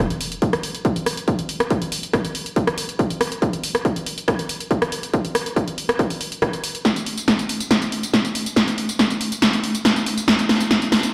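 Driving and dark, this peak-time techno excerpt runs at 140 BPM in a straight 4/4, built entirely as a build-up. An overdriven electronic drum kit of hi-hat, rim click, punchy snare and tambourine sits up front from 0.1 s, joined at 0.4 s by a heavy, layered electronic kick with its own overdrive and a high-pass filter, before a drum fill runs from 6.8 s to the end. The sound is drenched in a wet digital room reverb, as if blasted through a big sound system in a bare room.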